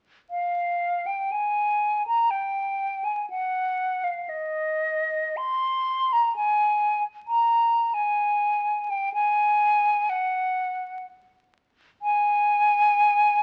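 A bright silver concert flute carries this short classical passage entirely alone, sounding from 0.3 to 13.4 seconds in a free, expressive rubato that drifts between 52 and 67 BPM over a loose 3/4 metre. Its airy, metallic tone, soft attacks and gentle vibrato sit up front, with lifted highs that keep the line clear as it moves between Eb5 and C6. The mood is meditative and yearning, each phrase unfolding with a searching, unhurried quality. A moderate large-studio reverb gives the flute a sense of space, while the grain and crackle of a very old 78 rpm record lend the whole a fragile, antique character. The passage is cut from a longer piece, so it feels like a brief glimpse into a larger musical thought.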